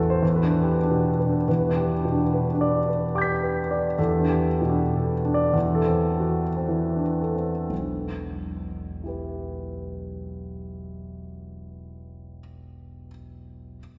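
Heavy church reverb with a 3.5-second tail and a dulled top end gives this short fragment of a longer impressionist solo piano piece a hazy, nocturnal air. An intimate concert grand sits up front, with audible action noise, deep bass and long sustain, ranging from E1 to B6 in E minor in a rubato 3/4 that drifts between 37 and 78 BPM. The playing slows from 0.2 to 7.7 seconds, moving from Em7 to Am6/E before a new section settles on E minor at 7.7 seconds.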